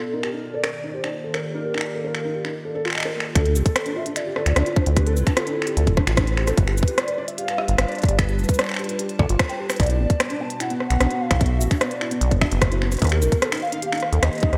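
A glitchy, overdriven drum kit of finger snaps, clicky hi-hats, rim clicks and shaker sets a straight 4/4 pulse from the opening moments, sounding up front and re-recorded in a small room, while a tight, overdriven electronic kick joins at 3.4 seconds. This IDM excerpt feels eerie and melancholic, carried by a detuned, wave-folded lead with vibrato that sings the melody through ensemble chorus, cassette tape coloring and digital delay. Beneath it, a lo-fi, tape-like pad holds slow-attack sustained chords with a long release, treated with chorus, phaser, reverb and sidechain pumping. A felt-muted upright piano plays intimate arpeggios with audible action noise, echoed by digital delay. Also arriving at 3.4 seconds, a rubbery, resonant acid bass with a filter sweep and tube saturation sits deep and dark in front of the mix, as the harmony moves from Ebmaj7 through Dm7, G7 and Bm7 before settling on Eb. 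The whole has a bright 1980s-style digital sheen with light reverb.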